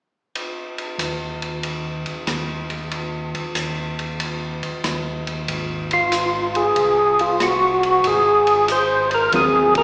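Bluesy and greasy, this short soul jazz organ trio excerpt swings in four, opening at 0.4 seconds with a vintage drum kit of dark cymbals, tight kick, rim clicks and a gritty, rolled-off sound, joined at 1.0 seconds by a mellow tonewheel organ holding down the bass with round, lightly overdriven tone, chorus vibrato and a slow rotary speaker. Over an Ab13 chord, a fat, percussive tonewheel organ takes the melody up front at 5.9 seconds, its overdrive, slow rotary and slapback echo giving it bite, while a dark, clean hollow-body jazz guitar adds a brief compressed accompaniment around a band accent near the end. The whole trio comes across as a live gig heard through the venue's PA, with plate reverb, recital hall reverb and a small speaker sound.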